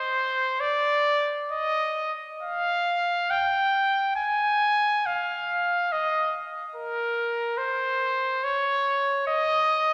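A clear trumpet opens the recording, playing solo and up front in a classical style. This is a free, expressive classical piece for unaccompanied trumpet, and its mood is lonely and mournful. The line moves in a triple metre, but the beats are uneven and the phrasing breathes with rubato, so the pulse feels elastic rather than strict. The trumpet ranges from Bb4 to Ab5 and carries the whole recording on its own from 0.0 to 9.9 seconds. A wet church reverb with a long 2.7-second decay surrounds the instrument, giving it a spacious air in this short passage cut from a longer work.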